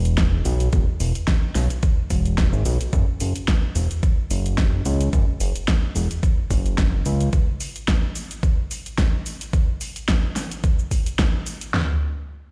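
Nu-disco with a sleek, sensual swing, taken from the drop of a longer piece: a thick, detuned sawtooth analog bass with tube saturation and sidechain pumping sits up front until 7.3 s, beneath two layered, overdriven electronic pop drum kits re-recorded in a small room, one carrying cabasa, warm hi-hats and snare, the other a prominent knocking kick, fat snare and toms.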